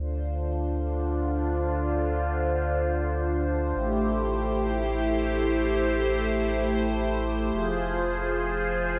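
Melancholic and intricate, this short IDM fragment from a longer piece drifts in free time in D minor, tuned to A4 = 439 Hz, with harmony moving from Dm7 to Am7 at 3.8 seconds and on to Fm at 7.5 seconds. Up front, a swirling, detuned sawtooth analog pad sustains soft-attack chords treated with phaser and chorus, while a deep, round sine sub bass holds mellow sustained notes beneath it. A cathedral reverb with a 5.7-second decay soaks the dreamy mix throughout.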